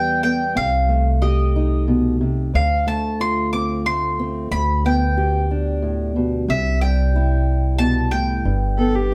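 A round, double-strung mandolin melody with plate reverb sounds from the start of this pastoral acoustic folk fragment at 91 BPM in a straight 3/4 in G mixolydian. It plays alongside a warm fingerpicked archtop guitar and a woody pizzicato upright bass, all up front in a moderate large studio space, moving from Em through Cm6, Dm7, G/D and C to G, until a rich, floating cello line from a single player, bowed sul tasto with a soft attack, enters at 8.8 s just before the cut at 9.1 s.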